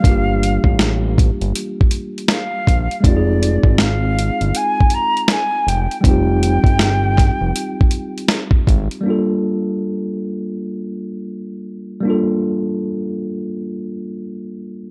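A mellow, airy concert flute carries the melody in this melancholic, reflective lo-fi hip hop excerpt, sounding distant with a touch of vibrato and a slapback echo, over a worn, slightly out-of-tune tine electric piano carrying the cassette-tape character. Beneath them sit a fat, saturated analog bass with a sawtooth edge and a dusty soul sampler-style drum kit, gritty and compressed, with a thumpy kick, a medium-tuned snare and hi-hat pushed up front in a swung groove. The harmony moves from Gm9 to Fm9 and back, giving the piece a reflective, unresolved cast within a dark production and light reverb. The flute stops at 8.3 seconds, with the bass and drums dropping out by 9.0 seconds. From there the electric piano plays alone on Gm9 until 14.9 seconds, its clean, direct tone exposed at the close of the cut.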